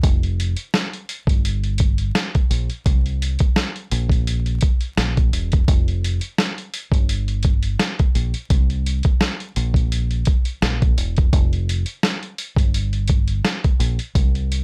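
A swung 85 BPM boom-bap groove in 4/4 drives this tough, reflective hip hop excerpt, with a compressed, pitched-down sampler-style kit of thumpy kick, medium-tuned snare and hi-hat sitting up front beside a dark, round, punchy fingered electric bass running from E1 to C2, all captured as a dry, gritty hardware recording laced with vinyl crackle.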